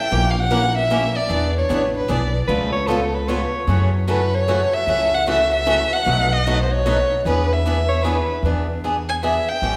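Acoustic string swing in the jazz manouche style, this charming, lively cut from a longer piece moves at 151 BPM in 3/4 with a swung eighth-note feel in E mixolydian. A warm, bowed violin carries the melody up front, its soft attack, vibrato and portamento giving the line an expressive, singing quality. Beneath it, a picked swing-style acoustic guitar with a boxy, fresh-stringed sound and audible finger squeak plays accompaniment alongside a parlour-style steel-string guitar set further back, which drops out at 8.2 seconds. A woody, thumpy upright bass on gut strings is plucked up front, anchoring a progression that moves from A#dim7 through E7, C#aug7 and F#m7 to B7 and back to E7. A bright, present soprano saxophone adds a jazz-style second line in brief spots, first entering at 2.5 seconds. The ensemble sits in a reverberant recital hall with a church-like ambience that lends the small group a spacious glow.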